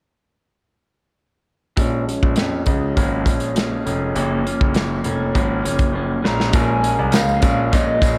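Indie bedroom pop in Bb minor at 101 BPM, hazy and wistful: a slightly broken-up, lo-fi electric guitar with lush chorus, warbly pitch drift and a filter sweep moves between Bbm7 and Gbmaj7, a brilliant concert grand piano carries the deep bass, and a punchy, mid-forward indie drum kit in a small room plays a fill at 5.9 s before a nostalgic square-and-sawtooth lead with vibrato takes the melody at 6.3 s, joined at 6.5 s by round, detuned analog keys with chorus and cassette-tape colour and a distant, jingly tambourine in the background, the whole set in light studio reverb.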